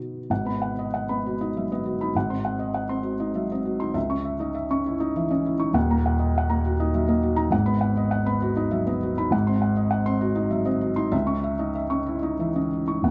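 A felt-muted upright piano plays alone, mellow and close up front, in this hopeful, intimate 13.1-second excerpt of neoclassical minimalist piano, moving with rubato at 66 BPM in 6/8 across a span from D#1 to C#6 through G#m7, G#7, C#madd9 and D#m, tuned to A4 = 442 Hz and set in light reverb with a dark production.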